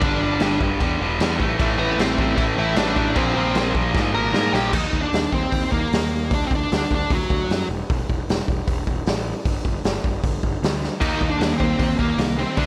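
A straight four-beat punk rock drive comes from a raw garage drum kit up front, with a punchy kick, a medium-tuned snare, a rolled-off top and cymbals in a bright stone room, while a fuzzed, overdriven electric bass picks out the low end for the whole clip. This rowdy, rebellious excerpt opens with a tight, distorted guitar riff and a dark, smooth overdriven lead carrying the melody, and soon a crunchy overdriven rhythm guitar joins from the background. A drum fill closes the first section at 4.7 seconds, where both riff guitars drop out and the lead continues over bass and drums until 7.7 seconds as the chords shift. The drums fill again at 10.8 seconds, and at 11.0 seconds the full band of guitars returns together for the final stretch. A light reverb gives the mix a touch of space while it keeps its rough edge.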